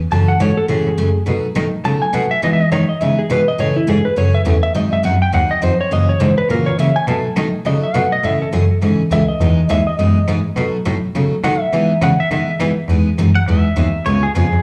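Playful and down-home, this swung country fragment, heard as if from a live club gig through the venue's PA on cassette tape, has a clean, compressed lap steel carrying the slide-drenched melody with slapback echo and analog delay until 12.6 seconds, a full-bodied picked dreadnought acoustic guitar picking through the jazzy seventh-chord changes, a biting bowed cello with vibrato holding down the bass up front, and a twangy fingerpicked pedal steel slipping in at 13.4 seconds for a brief closing solo.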